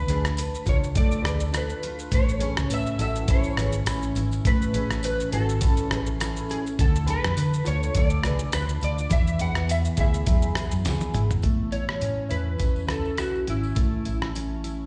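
Dreamy, sunny indie bedroom pop in A major at 103 BPM with a light 16th-note swing, this excerpt sets a slightly broken-up slide guitar melody over fingerpicked, full-bodied nylon-string guitar with chorus, warbly pitch drift and slapback echo, a dark, round, foam-muted bass up front, a twangy picked electric guitar second line that drops out at 11.3 seconds, a gritty, tape-warm sampler-style kit with thumpy kick and fat snare that fills into the closing section at 11.4 seconds, and a very quiet jingly tambourine, all heard as a live gig through a venue PA with recital hall reverb and a dulled top end.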